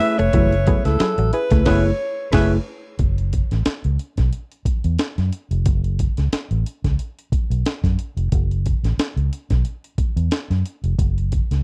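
Funky and hypnotic, this 90 BPM funk cut in F# minor opens with a clear, vibrato-laced alto saxophone solo with tape echo over a distant horn section, a dark, fingered electric guitar in spring reverb, a picked, direct-recorded guitar riff and stringy muted clav stabs, with a band accent at 1.7 seconds, before the horns, guitars and clav drop away by 2.6 seconds and the gritty, pitched-up, sampler-style breakbeat with its thumpy kick and high-tuned snare rides on with a round, foam-muted fingered bass through to 11.6 seconds in a dry, close 1970s-style studio sound.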